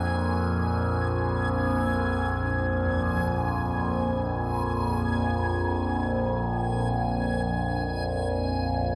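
A resonant, sawtooth-and-sine drone between Bb1 and F2 opens this ominous, vast dark ambient fragment in free time, sitting up front with moving overtones, chorus, phaser and a long release over a Bb7sus4 harmony. A reversed, dreamy granular texture on a high Ab5 hovers above it, bright with shimmer reverb. At 2.8 seconds, very quiet gamelan-type bossed gongs enter with metallic, bronze arpeggios that beat gently inside a huge, wet reverb and a cassette-tape sound.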